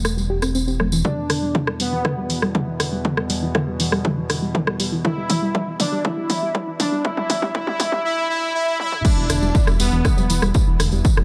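A straight 4/4 pulse at 120 BPM drives this driving, cinematic melodic techno cut in E minor. A punchy, dry analog drum machine plays congas, hi-hat, rim click, toms and crash throughout, joined at 1.0 s by a heavy, layered electronic kick up front, with a jingly acoustic tambourine heard at the opening and close. Soft, round pluck arpeggios with chorus and dub echo float over a warbling vintage drone, while bold, brassy analog synth brass carries the melody through a build-up of drum fills and filter sweeps, the pluck, drone and brass all pumping against the kick, until the drop at 9.0 s brings back the deep, rumbling detuned saw bass heard briefly at the start.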